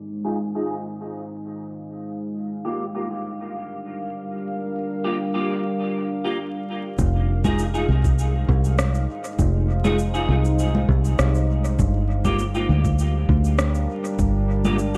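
Vinyl crackle, light reverb and a low-pass filter colour this deep, meditative ambient dub piece at 100 BPM in F dorian, cut from a longer work and moving between Fm7 and Gm7. A dark sawtooth pad with a slow attack sustains chords from the start, joined at 0.2 seconds by clean semi-hollow guitar stabs bathed in ensemble chorus and dub echo, while a filter sweep runs through the opening 7 seconds. At 7.0 seconds an up-front, foam-muted fingered bass enters alongside an overdriven, thumpy kick set in the background and electronic shaker, congas and rim click sent through dub echo.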